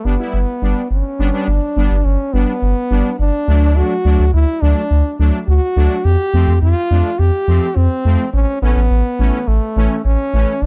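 A straight 4/4 pulse drives this upbeat, nostalgic synth-pop excerpt, where a round, deep analog bass sits up front and a fat, detuned analog synth-brass part, thickened with chorus, carries the accompaniment until 10.5 seconds. Over them a clear French horn sings the melody in a classical style, with light vibrato, a soft attack and an analog delay trailing its lines. The harmony settles at 1.5 seconds into a run from G to D, Fadd9 and Aadd9, captured in a dry, gritty hardware recording with studio reverb.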